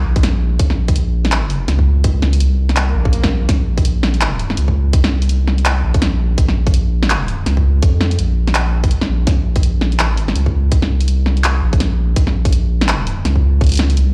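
Heard as if through a big sound system in a bare room, this dark, spacious half-time drum and bass cut at 166 BPM in Bb minor rides a deep, saturated sub bass with a triangle tone and fast attack, up front from the start, while a tight, layered electronic kick and a produced kit of cracking snare, hi-hat and handclaps in small room ambience arrive at 0.2 seconds, and a faint electronic swell appears in the background at 2.9 seconds.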